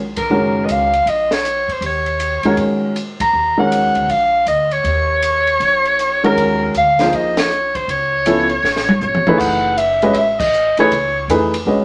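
Modal jazz at 158 BPM in Eb dorian, cool and hypnotic, swings with a mellow, vibrato-laden soprano saxophone soloing up front yet sounding distant and roomy, a warm, present baby grand piano comping from Ebm7 through Db7alt to F#m11, a woody, thumpy pizzicato upright bass on gut strings, and a dry compact cocktail kit with dark cymbals, high-tuned snare and punchy kick that throws a fill from 8.6 to 9.4 seconds before the new section, all set in wet studio reverb in this cut from a longer piece.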